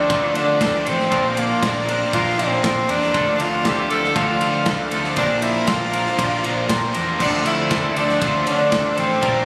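Indie rock in a moody, restless vein, this short cut from a longer piece sets a clear, breathy tenor saxophone melody with vibrato up front over a bright, twangy twelve-string electric guitar riff with spring reverb, a warm overdriven guitar riff sitting in the background with subtle chorus and digital delay, a growling, overdriven picked bass, a big acoustic rock kit with punchy kick, medium-tuned snare, crash and ride, and a very quiet, swirling vintage string machine with phaser sustaining chords that alternate between Dm7 and Bbadd9, all captured on a phone in the room with light reverb and compression.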